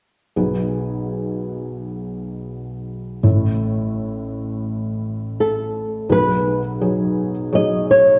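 Heartfelt and hopeful, this short folk excerpt at 84 BPM in straight 4/4, tuned to A4 = 437 Hz, opens at 0.4 s with a soft, mellow felt-muted upright piano up front, playing intimate accompaniment over B6 and A chords, before a warm, thumb-plucked acoustic flamenco guitar joins up front with the melody from 5.4 s until 8.2 s, the whole sounding in the wet reverb of a recital hall.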